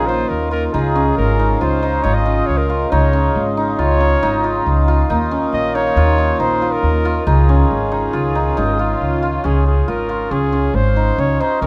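Restless and playful, this contemporary chamber piece moves in an uneven 5/4 at 138 BPM with a straight feel, set in Db major and tuned slightly above standard pitch. A flugelhorn carries the melody as a solo voice with a light vibrato and a warm, close-miked, pop-style tone. Beneath it, a shimmering, ringing hammered dulcimer plays arpeggios up front, while a pizzicato upright bass with gut strings gives a woody, dark, thumpy foundation. A reedy, breathing pedal harmonium holds sustained chords in a boxy small-room sound until 9.4 seconds, when a new section begins and the other three parts carry on to the close at 11.7 seconds. The harmony moves between Ebsus2 and Db, ending on Dbadd9, and the close, detailed recording with light reverb makes this fragment of a longer piece feel intimate.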